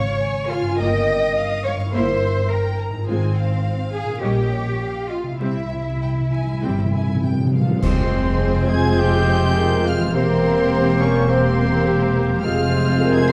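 In a straight 4/4 at 104 BPM, this stormy, dramatic F minor passage from a fast romantic symphonic movement opens with a lush, vibrato-rich violin section carrying the melody over a smooth second violin line, ringing fingerpicked harp arpeggios, rich bowed cellos and soft-attack double basses, with violas joining at 0.8 s; a close, dry timpani fill with dark cymbals, a cymbal swell and bass drum from 5.4 s leads to a band accent at 7.8 s, where pure flute, clear oboe and distant clarinet add second lines, a warm bassoon adds accompaniment, a tight trombone section sustains chords, a punchy trumpet plays stabs and a mellow French horn section soon joins, heard through a dark production with recital hall reverb and vinyl crackle.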